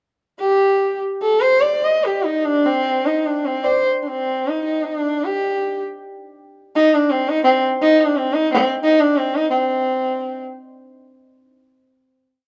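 In a 3/4 metre with a straight feel, the tempo steadily speeds up from about 142 to 202 BPM over this complete, very brief piece of Indian classical music in raga Shivaranjani on C. A lone bowed sarangi carries everything from 0.4 to 10.4 seconds, sitting up front with a dark, woody voice, a soft attack and light vibrato, its sympathetic strings ringing beneath each phrase. The line glides between notes with portamento across a range from C4 to Eb5, blending a composed line with improvisation inside a rhythmic cycle. The mood is one of longing and meditation. Most of the short span is the climax, and the final note arrives at 9.5 seconds, all heard live in a single room with light reverb.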